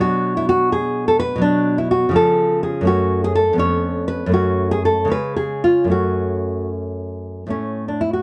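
Serene and dance-like, this brief baroque-style classical excerpt in F# minor features a warm, fingerpicked nylon-string guitar up front with audible finger squeak, moving in a rubato 6/8 at about 74-85 BPM from Bm through C# and C#7/E# back to F#m before the chords fall away at 7.5 seconds, all in a dry, close 1970s-style studio sound with light reverb.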